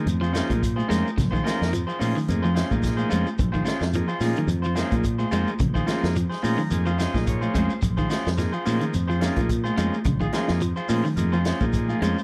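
A buzzy combo organ sits in the background with spring reverb, and a twangy, brilliant-toned electric guitar at the edge of break-up picks low arpeggios, opening this driving, hypnotic afrobeat piece cut from a longer performance. A round, dark fingered bass sits up front, while a vintage drum kit with a punchy kick, medium-tuned snare, hi-hat and a rolled-off top keeps a lightly swung groove. Soft-handed, high-tuned congas with a thick-skinned sound stay in the background alongside a grainy, mellow shekere, both with a band-limited character. A second guitar, picked and slightly broken-up, adds stabs in a higher register, bathed in its own spring reverb. From 6.2 to 7.8 seconds the organ plays a fill over a single unchanging minor-ninth chord, all captured in a dry, close 1970s-style studio recording.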